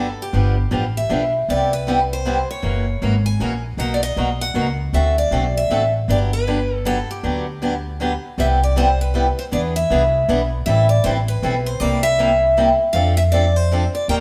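A swung 3/4 lilt at 157 BPM drives this playful, swinging excerpt of acoustic string swing in the jazz manouche style, where a bright, fresh-stringed parlour steel-string guitar picks the melody up front over a boxy, picked swing-style rhythm guitar and a woody, thumpy pizzicato upright bass on gut strings, the trio playing live together in a moderate stone room as the music moves from G major to C major at 8.4 seconds.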